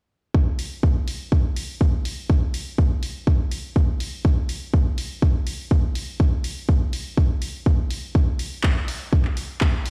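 A punchy, up-front electronic kick drives a straight 4/4 house groove at 123 BPM from 0.3 seconds, joined at 0.6 seconds by a layered house drum kit of handclaps and hi-hat sitting well beneath it, both carrying studio reverb. The feel-good, euphoric drum-only passage, cut from a longer piece, sounds as if played on a big sound system in a bare room, with a stony reverb around it.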